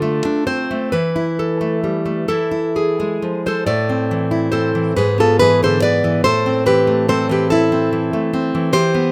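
Romantic solo classical guitar in A minor, melancholic and wistful, drifting in rubato 6/8 at a slow 43-49 BPM as a fingerpicked nylon-string guitar, bright and full-bodied with fresh strings and audible finger squeak, sits up front in light reverb and small-room ambience on a rough home demo, moving from Dm through Esus4 and E to a settling on Am around 3.7 seconds before E7/G# pulls back to Am in this short cut from a longer piece.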